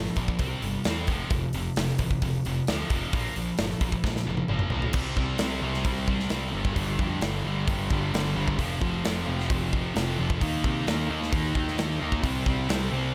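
Restless and cathartic, this quiet-loud alternative rock passage drives along at 132 BPM in a straight 4/4, with a bright, scooped high-gain guitar riff, a fuzzy overdriven picked electric bass and a big, punchy rock drum kit with bright cymbals opening together, a drum fill arriving at 4.0 seconds before a thick, warm fuzz guitar joins the riff at 4.9 seconds, all set in light studio reverb over power-chord changes on C5, F5, Bb5, G5 and Eb5.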